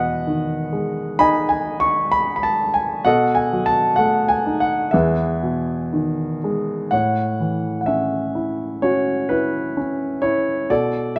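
A warm, up-front grand piano plays alone in a tender, lyrical classical excerpt at a rubato 64 BPM in 4/4, moving through rich E major harmonies before shifting to A major at 6.9 seconds, ranging from low E2 to high C#6 within a moderate recital hall reverb, in a tuning slightly below standard pitch.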